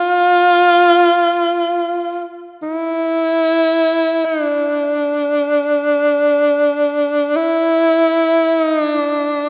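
A dark production sits inside a moderate church reverb whose 2.8-second tail hangs around every note. The piece is Japanese chamber music in a traditional vein, unfolding in free time with a solitary, austere mood. A single tenor saxophone carries the whole fragment from 0.0 to 9.5 s, close-miked and up front, with a clear tone and a vibrato shaped in a pop style. Its line stays within a narrow span from D4 to F4, and the instrument is tuned to A4 = 439 Hz. The brief passage is cut from a longer work and leaves the lone reed hanging in that spacious, shadowed room.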